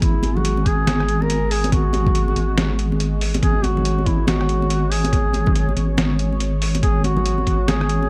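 A dry, gritty recording opens this short cut from a longer piece of deep dubstep at 141 BPM in half-time with a swung feel, heavy and cavernous in mood. A mellow, distant duduk carries the folk-style melody with vibrato and scooped notes through a dub echo, over a deep, warm wobble bass held up front and a moody, detuned analog pad sitting in the background with chorus. A muffled, thumpy, pitched-down kick and a compressed sampler-style kit of hi-hat, rim click and snare drive the beat, while bright, hard-handed congas enter at 0.2 seconds further back in the mix.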